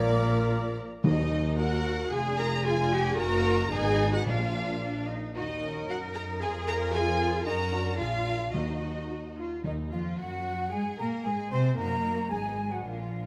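A quick classical-period movement for symphony orchestra in Eb minor, this passage moves at 112 BPM in a straight 2/4 with an urgent, stormy mood, and is cut from a longer piece. The opening moment gathers a full wind and brass chord: a dark clarinet, a very quiet cor anglais, a bassoon in the background, a barely audible French horn section and a mellow, vintage trumpet section stabbing on Bb before they all fall away by 0.8 seconds. Throughout, the strings carry the music. A rich, expressive violin section sings the melody with vibrato and portamento, while a second, clear and intense violin section weaves a lush line behind it. A focused viola section supplies close accompaniment, and the cellos with their soft attack join the up-front double basses to anchor a deep bass. Close, dry timpani on medium mallets punctuate the phrases in short bursts, an airy flute section returns at 9.7 seconds for the final stretch, and a moderate scoring-stage reverb surrounds the ensemble.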